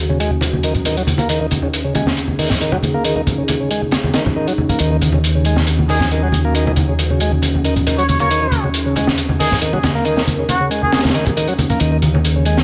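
Raw and funky, this breakbeat excerpt runs at 137 BPM in a straight 4/4, sitting on an Eb minor seventh chord within Eb minor pentatonic. A crunchy, saturated drum kit with a high-tuned snare sits up front, joined by soft-handed, thin-skinned congas, a fingered electric bass holding Eb2, and a shouting, lightly overdriven tonewheel organ riff with a stopped rotary speaker and delay, while a deep, moody ambient pad sustains chords in the background under a filter sweep. At 5.9 seconds a veiled, distant cup-muted trumpet enters with a soft melody given a telephone sound and delay, stopping at 11.0 seconds, all within a light studio reverb.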